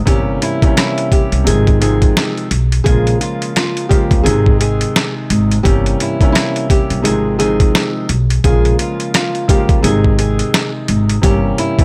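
A gritty, compressed boom-bap kit drives this moody hip-hop piece, its pitched-down, tape-tinged sampler sound carrying a thumpy kick, medium-tuned snare, rim click and hi-hat with a swung sixteenth feel, while a woody pizzicato upright bass sits beneath, both entering together with the other parts. Up front with the drums, a dark, mellow vintage grand piano with long sustain cycles through C7b9/G, Fm7/Ab, Bbm7 and Ab. A fingerpicked nylon-string guitar carries a full-bodied classical melody with audible finger squeak and a touch of delay, all set in a small room ambience and cut from a longer piece.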